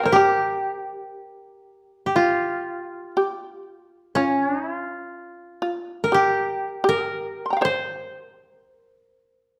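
A mellow, woody koto carries the melody while a buzzing, percussive plectrum-plucked shamisen plays a powerful second line throughout this calm, austere passage of traditional Japanese chamber music, moving in a free rubato feel within a moderate recital-hall reverb, cut from a longer piece.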